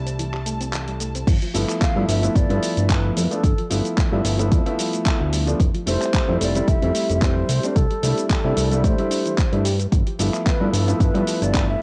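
Groovy and feel-good, this nu-disco piece at 111 BPM in G mixolydian opens with a lush, distant string chord pumping over boxy grand piano, a fat, saturated sawtooth bass and a very quiet, round pluck arpeggio, then drops at 1.3 s as an overdriven, punchy electronic kick joins the gritty sampler-style kit of cabasa, handclaps, hi-hat and crash, with an airy, hollow concert flute carrying the melody from 1.8 s, the whole captured as a lo-fi cassette home recording with light reverb.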